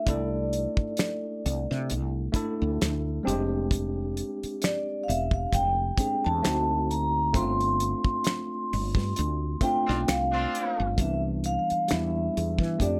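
Relaxed and smooth, this neo-soul R&B excerpt moves at an unhurried 66 BPM in 4/4 with a lightly swung sixteenth-note feel in C major. A vibraphone played with soft mallets carries the melody up front, its airy, ringing tone shimmering with slow motor vibrato and a slapback echo. Underneath, a worn, slightly out-of-tune tine electric piano supplies overdriven chords, while a woody fretless bass adds a round, hollow-body depth softened by lush chorus. A damped 70s kit keeps things dry and close, with finger snaps, hi-hat, a fat snare and a tight kick. The band accents together from 7.3 to 11.0 seconds, and a distant, roomy horn section drops in for brief stabs at 9.9 seconds before the harmony settles onto Cmaj9 and Em7 under light reverb.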